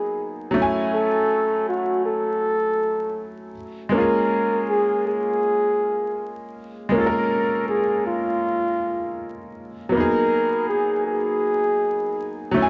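Dark, hazy production with vinyl crackle and a wet, short room sets a reflective mood for this swung hip hop fragment cut from a longer piece. A breathy, mellow flugelhorn carries the melody up front in a jazz style, its scooped notes and soft attacks heard close and muffled by a low-pass filter. Beneath it, a brilliant, woody upright piano, slightly detuned with audible action noise and a cassette-tape tint, plays intimate accompaniment, the harmony settling onto a new chord at 3.9 seconds.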